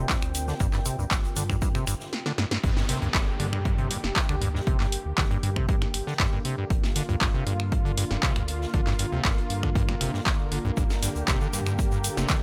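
A straight 4/4 groove at 118 BPM drives this gritty acid house cut in G minor, taken from a longer piece, with a punchy, tape-warm electronic kick sitting up front beside an analog drum machine whose snare, handclaps, finger snaps and hi-hats carry a short room sheen. A very quiet acoustic jazz kit adds natural hi-hat and snare underneath, while a grainy egg shaker ticks in the background at the start, drops out, and returns at 10.8 seconds. The squelchy, hollow square-wave acid bass riff, overdriven and resonant with a filter sweep, rides above a round, deep analog bass that pumps from the sidechain beneath it. A lush, thick unison pad holds warbling, detuned vintage chords with chorus, and a moody wave-folded ambient pad with ring modulation and built-in reverb glows behind it until 2.2 seconds. After a brief drum fill, the drop lands at 2.6 seconds, joined by an electronic downlifter in the background, and the whole track keeps its driving pulse inside a small room ambience.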